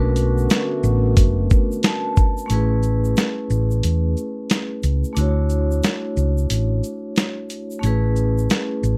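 A dark, lightly reverberant mix with a faint mains hum carries this confident, soulful boom-bap hip-hop fragment in A major at 90 BPM, swung on the sixteenths. Up front, a gritty, compressed sampler-style kit with a thumpy kick enters at 0.2 s beside a round, punchy hollow-body fingered bass. Meanwhile a metallic, ringing vibraphone with slow motor vibrato and cassette-tape colour accompanies over Bm7 to Amaj7 and Dmaj7. A deep, moody detuned analog pad sits in the background and drops out at 2.5 s as the break begins, while a grainy tube shaker adds faint bright texture.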